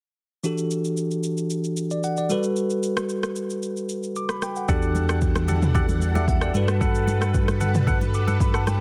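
Deep and hypnotic, this amapiano fragment in E minor moves at 113 BPM as a bell-like tine electric piano and a punchy, gritty deep house kit of kick, rim click, shaker and toms open over Em11 and Gmaj9, joined at 4.7 seconds by a round analog bass, a swirling phased string machine with sidechain pumping, and hollow organ stabs trailing tape echo, with very quiet thick-skinned congas arriving at 4.9 seconds under light reverb and a dense, heavily limited master.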